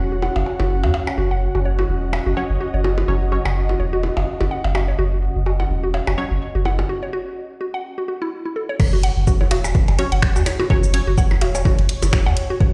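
Built on a 4/4 pulse at 126 BPM with a light 16th-note swing, this clinical, sparse slice of minimal techno is cut from a longer piece. A punchy sine sub bass with a pitch-drop attack sits deep and up front throughout, pumping under sidechain, while an ethereal, airy pad of detuned unison voices drifts above in ensemble chorus and its own reverb. A woody, nasal mallet-like FM pluck carries the riff with dub echo, and overdriven percussion blips tick through tape echo and studio reverb. A muted, detuned chord stab with a filter pluck and cassette grit appears from 2.4 seconds and returns near the end, before a break gives way to a drop at 8.8 seconds, where an analog kick and a bright garage kit of hi-hat, cabasa, finger snaps and crash enter. The whole piece plays through a big sound system in a bare stone room, adding light reverb and a digital ambience.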